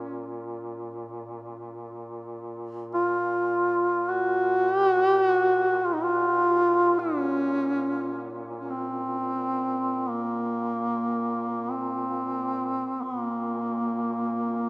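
Caucasian folk lament in free time and B-flat minor, tuned to A4 = 441 Hz, where a warm, up-front duduk sings a solemn, longing melody between Bb3 and Gb4 with vibrato and scooped notes, while a second, vintage-toned duduk holds a quiet Bb2 drone beneath it, also with vibrato and scooped notes, for the full 14.7 seconds of this fragment of a longer piece, all bathed in a cavernous cathedral reverb.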